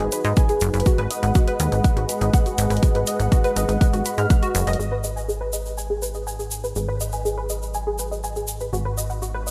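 Melodic techno at 122 BPM in G# minor, this hypnotic, melancholic excerpt sets a deep, detuned analog pad of sustained chords under woody, wave-folded arpeggios carried by ensemble chorus and delay, while a punchy, funky sawtooth bass sits up front, all three pumping against the sidechain as the harmony moves from G#m to B/G# and back. A tape-flavoured, layered kick hits hard from 0.4 to 4.4 seconds alongside a low-pass filtered electronic hi-hat and a grainy egg shaker, and once the hats stop at 4.8 seconds a filter sweep moves across the pad. The whole mix carries a lush hall reverb and a bright 1980s-style digital sheen.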